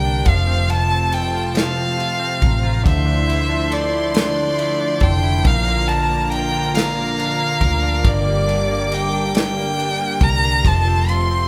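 Set in a moderately reverberant large room with the band playing live together, this romantic, heartfelt six-eight pop ballad in F major moves at 46 BPM, as a rich, smooth bowed solo violin carries the melody up front with vibrato over a bright, twangy, direct-recorded clean electric guitar, a detuned, warbling analog pad with chorus sustaining chords with a soft attack, and a dark, round, foam-muted fingered bass, while a sul tasto violin section with light vibrato and an acoustic drum kit of punchy kick, snare and ride sit in the background from 0.3 seconds.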